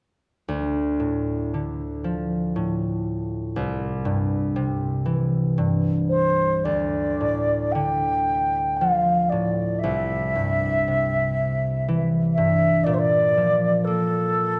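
Longing and haunting, this excerpt of a Celtic slow air in a loose, rubato triple metre opens with fingerpicked, ringing concert harp accompaniment from 0.5 seconds, joined at 6.1 seconds by a mellow, woody baroque flute carrying an airy, expressive melody with vibrato and tongued notes, all set in a dark production with moderate concert hall reverb.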